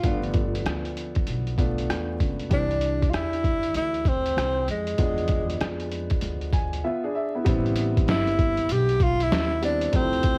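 A breathy, whispered tenor saxophone with vibrato leads this nocturnal, cool jazz-hop fragment over a clear, woody upright piano, a dark, gut-strung pizzicato upright bass and a muffled, pitched-down sampler-style drum kit with a thumpy kick, all under light reverb and vinyl crackle with cassette tape color on the saxophone, piano and drums, as the piano takes a fill at 6.2 seconds, the drums fall silent from 6.8 to 7.5 seconds, and the saxophone steps forward into a solo at 7.5 seconds.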